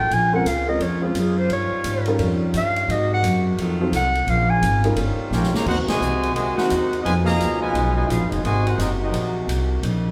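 A breathy clarinet with subtone and vibrato leads this energetic big band swing fragment at 173 BPM, taking the opening solo until 4.8 s. Beneath it, a warm saxophone section holds tight sustained chords, an upfront upright bass plucks a woody line, and a dark baby grand piano adds intimate accompaniment with audible action noise and short sustain. At 5.3 s a drum fill leads the band into Ab major, where a mellow trumpet section takes the melody over a clear trombone second line sitting in the background, all punctuated by a band accent at 5.8 s. The drum kit swings throughout with a punchy kick, medium-tuned snare, hi-hat, ride and crash. The band plays live together in one large studio room, its reverb giving a wet, spacious sound.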